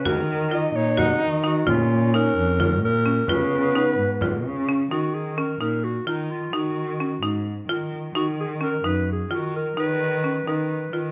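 Urgent and restless, this contemporary chamber piece in 7/8 at 259 eighth-note beats per minute in E-flat minor sets a raspy, growling jazz-style clarinet melody with scooped notes over buzzing hard-mallet marimba arpeggios and a dark, bowed cello bass, while a warm, classical-style French horn second line and a deep frame drum in a large room drop out at 4.6 seconds, heard through close, detailed microphones and light reverb.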